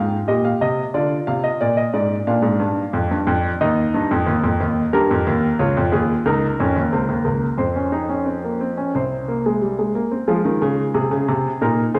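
A clear, up-front concert grand piano rings in a wet recital hall with a 1.7-second reverb, its deep bass and natural tone heard on its own throughout this 12-second fragment of a longer piece. Written as a baroque-style three-part fugue at 90 BPM in straight 4/4, it moves from Eb major into F minor at 4.9 s, with chords such as Ddim, Gdim and Csus4/F adding tension. The mood is joyful yet stately, and a new section begins at 10.3 s on a return to Fm, spanning a range from C2 to F5.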